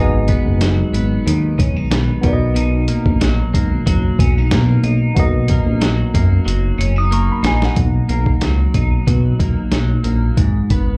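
A dark, glossy chorused synth bass anchors this dreamy, hazy indie bedroom-pop clip from a longer piece, joined by a muffled, overdriven lo-fi sampler-style drum kit with a thumpy kick and a fill from 6.5 to 7.8 seconds, a bright, twangy twelve-string electric guitar in lush chorus and warbly pitch drift, and a worn, slightly out-of-tune tine electric piano through cassette tape, plate reverb and slapback echo that drops out at 7.9 seconds, the whole mix heard as a live gig through the venue's PA with club reverb.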